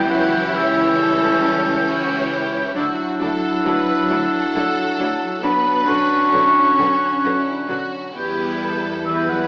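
Moving in a slow, rubato 3/4 at 67 BPM, this bittersweet, cinematic film-score excerpt in B minor unfolds as a brief, moving passage cut from a longer piece. A lush violin section carries the melody with vibrato and a smooth top, while a second, more distant violin section adds a clear line in the background. Woodwinds weave further lines around it: a solo oboe, the most prominent voice, sounds roomy and distant in classical style, a close-miked clarinet brings a bright edge, and a flute section floats high above with an airy, hollow, straight tone and soft attack. Underneath, a mellow French horn section sustains chords with light vibrato, a close viola section fills in the accompaniment, and bowed cellos and a clear double bass section anchor the bass. The harmony moves from C#dim through Dadd9 and Bmadd9 to Em at 8.1 seconds, all bathed in the wet reverb of a scoring stage, though the overall sound has a small-speaker quality.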